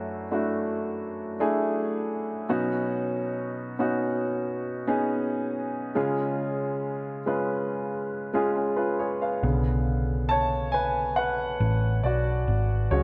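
Pop with a melancholic, heartbroken mood, this excerpt opens on an up-front baby grand piano, clear and open with long sustain, moving through Dadd9/F#, Badd9 and C# before a round, dark hollow-body electric bass joins at 9.4 s under Bmadd9 as the piano takes a solo, all bathed in a lush hall reverb.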